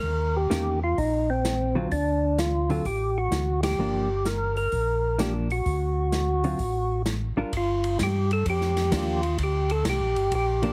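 A fat, percussive tonewheel organ carries the melody through a slow rotary speaker and light overdrive, turning to a solo at 7.5 seconds, while a second, round and mellow organ holds the bass line with chorus vibrato. This bluesy, late-night soul jazz organ trio cut swings at 128 BPM in G minor over chords like Eb7, D(#9) and Gm7, with a dark, clean hollow-body guitar comping and an airy acoustic drum kit with dark cymbals and a boomy kick joining at 0.5 seconds, the band hitting an accent at 3.5 seconds. Light reverb surrounds the parts, and the whole mix has a heavily compressed, radio-like sound.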